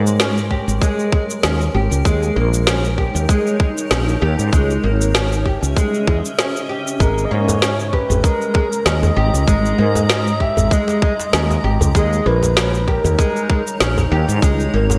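The recording has a bright, 1980s-style digital sheen set in a lush hall reverb, framing a meditative, earthy organic downtempo piece at 97 BPM in 4/4 with a light swing on the sixteenths. A cloudy, blurred granular pad holds sustained chords with a gentle sidechain pump. A mellow, double-strung oud plays plectrum-plucked arpeggios roughened by 12-bit sampler grit and trailed by digital delay. Beneath them, a growly, round fretless electric bass sits up front and pumps with the pad, while a tight, tape-colored electronic kick and a layered shaker and woody snare with gated reverb drive the groove, and a very quiet quartz singing bowl rings with slow beating. At 7.0 seconds a breathy, flute-like synth lead enters with subtle chorus, vibrato and delay, and a cracking djembe played with hard hands joins at 7.5 seconds. The harmony circles through G#sus2, D#7sus4 and C#madd9 before settling on C#5 at 14.4 seconds in this excerpt from a longer piece.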